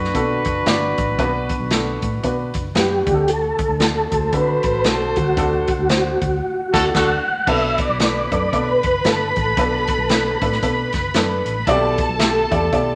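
Swinging eighths at 114 BPM drive this driving, passionate slice of uptempo 1960s-style soul, with a punchy, up-front big-band drum kit, a dark, foam-muted fingered electric bass and a natural-sounding baby grand piano carrying the groove over B minor and D harmony. A smooth, jazz-style horn section fills out the opening, and at 2.8 s a soft, flute-like tonewheel organ takes the melody through a fast rotary speaker and chorus vibrato; the band hits an accent at 6.4 s. From 7.5 s a bowed, even studio violin section with vibrato carries the second line, all set in moderate studio reverb.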